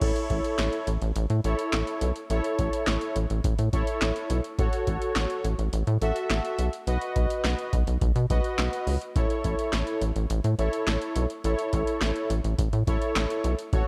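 A lightly reverberant, digital-sounding synth-pop excerpt at 105 BPM sets a driving, melancholic mood as a rubbery, bouncy square bass and an electro analog drum machine with a deep kick, punchy snare, handclaps, metallic hats and crash cymbal push under fat, brassy analog synth brass, detuned and chorused with vibrato, through a progression of A, F#m/A, B and back to A.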